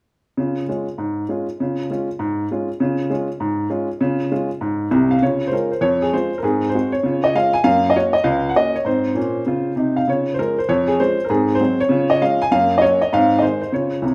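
An upright piano carries this short stride jazz passage alone, sounding woody and intimate, with audible action noise and long sustain placed up front in the mix. The mood is swinging and playful, moving at a brisk 198 BPM in 4/4 with a clear swing feel on the eighth notes, in Db major. The piano spans from C2 up to Ab5, and the harmony cycles through Db, Db/F, Ab7, Gb and Ab, returning to Db along the way. After an opening stretch, a new section begins at 5.2 seconds and runs to the close at 14.1 seconds. A large studio reverb gives the instrument a wet, roomy halo while keeping the live, in-the-room character of the performance, and the clip is cut from a longer piece.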